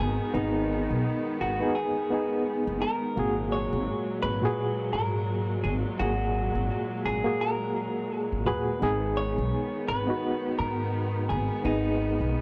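Dark and hypnotic, this trip hop fragment from a longer piece sways on a swung 16th-note feel, with a clean, scooped electric guitar melody drifting through tape echo over a reedy electric piano whose fast tremolo and echo sit up front. A woody, thumpy pizzicato upright bass with tube saturation anchors the low end, while a veiled, con sordino string section holds distant bowed chords underneath. The dry, gritty hardware sound frames a G#m harmony that shifts to F#add9/G# at 3.2 seconds and returns at 8.8 seconds.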